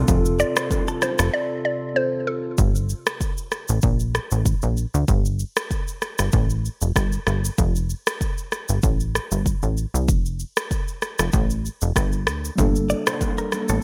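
A punchy, funky analog bass with a filter pluck sits up front through this mellow, sultry afrobeats excerpt, driven by an electronic drum kit with a deep kick, rim click and shaker under gated reverb, while a clean tine electric piano, a hollow, flute-like pad with chorus and sidechain pumping, distant ringing congas and bongos, a compressed, direct-recorded electric guitar riff with spring reverb and delay, and a woody FM mallet-like synth pluck with chorus and delay color the opening before a break at 1.3 seconds, with all but the pluck returning around 12.6 seconds, the guitar slightly later at 12.9, in a bright 1980s-style digital production.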